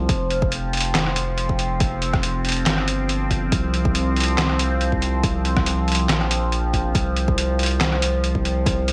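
A half-time groove at 140 BPM, swung on the 16ths, drives this dark, cavernous deep dubstep excerpt, built from an overdriven, layered electronic kick re-recorded in a large room and a gritty, pitched-down sampler-style kit of compressed snare, handclaps, hi-hat and rim click. Up front, a thick, saturated triangle sub bass sustains beneath a resonant sawtooth-and-sine drone whose slowly blooming chords carry moving overtones through chorus, phaser and built-in reverb. The harmony holds on F5 before shifting to Csus4 at 3.5 seconds, all set in light digital ambience.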